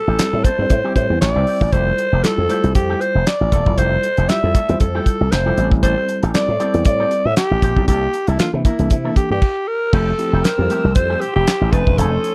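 A dry, close recording in a 1970s studio style, with little reverb, carries this short cut from a longer early-eighties boogie funk piece, smooth and feel-good at 117 BPM in F major with a lightly swung sixteenth-note feel. Up front, a breathy, raspy alto saxophone with vibrato and a slapback echo sings the melody, while a punchy, growly slap bass run through an envelope filter holds down the low end. The damped drum kit sits just as close, its fat snare, tight kick, hi-hat, handclaps and crash cymbal heard with a rolled-off top. A mellow, slightly out-of-tune tine electric piano adds tube-saturated accompaniment, and an electric guitar with its own envelope filter and subtle chorus plays a twangy, compressed riff in the background. The harmony moves through Am7, Fmaj9 and C13, and at 9.9 seconds a lush, detuned unison pad with chorus enters softly behind the band, sustaining chords over Fmaj9 and F7alt.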